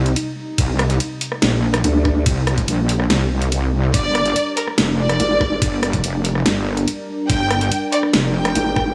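A heavy half-time dubstep groove in 4/4 drives this chaotic fragment from a longer piece: a knocking electronic kick joins at 0.6 seconds beneath a layered kit of huge snare, bright hi-hats, ride cymbal and rim clicks with a tape-like glow, while a saturated, detuned sawtooth wobble bass churns up front and a nasal, formant-filtered vowel-sweep wobble bass cuts in for brief bursts. Behind them a thick, warbling vintage pad sustains chords under sidechain pumping, shifting from C minor to G minor as a lush symphonic violin section enters at 3.9 seconds with focused, vibrato-rich bowed lines carried by tape echo. The whole mix sits in light digital reverb.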